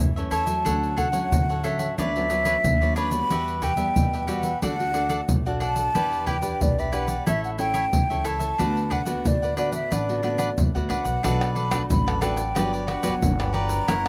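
A breathy, hollow concert flute carries the melody in this sunny, festive samba and choro fragment, its soft-attacked straight tone sitting close and prominent from 0.3 seconds. Beneath it, a fingerpicked nylon-string guitar and a crisp, picked cavaquinho with slapback echo fill out the harmony, while a woody, thumpy pizzicato upright bass anchors the low end. Up-front percussion of egg shaker, tight surdo, pandeiro and tamborim, played with hard hands, drives the groove in a dry, close sound, with a shift to a new section at 11.2 seconds before the cut.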